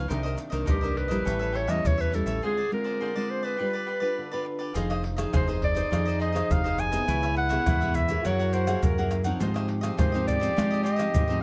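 A straight 4/4 samba-and-choro groove at 103 BPM, driven by a tight surdo with hard-handed pandeiro, tamborim and maracas, carries this yearning, bittersweet passage cut from a longer piece, as a crisp picked cavaquinho, a fingerpicked classical nylon-string guitar with audible finger squeak and a dark, round dub electric bass support an up-front, clear classical-style clarinet entering at 0.7 seconds, with a break at 2.4 seconds before a vintage jazz-style trombone with vibrato joins at 4.8 seconds, the whole captured by close, detailed microphones in a moderate large studio reverb.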